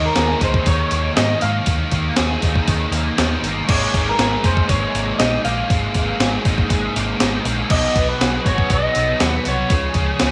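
Indie rock at 120 BPM in a straight 4/4, jangly and upbeat, this short cut from a longer piece moves through Ebsus4, Absus2, Cb6 and Db chords. A twangy, slightly broken-up lead guitar through a small old amp carries the melody with slapback echo, while a bright, overdriven garage guitar with ensemble chorus and a sludgy, distorted one share the riff over a dark, round hollow-body bass. An up-front, sampler-style drum machine enters at 0.2 seconds with a thumpy kick, hi-hat, crash and gated-reverb snare, all set in a digital ambience.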